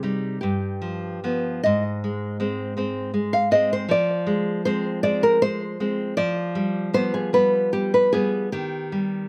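Solemn and elegiac, this romantic duo for two nylon-string guitars moves in a slow, rubato 6/8 at about 52 BPM in dotted quarters, its uneven beats drifting from G7 through Ab and Dm7b5/F to a rootless Cm/Eb over roughly 9.3 seconds cut from a longer piece. Up front, one fingerpicked nylon-string guitar carries the warm, classical melody in a high register, touched by a slapback echo. The second plays dark, full-bodied accompaniment from its low strings, the pair captured outdoors with light reverb.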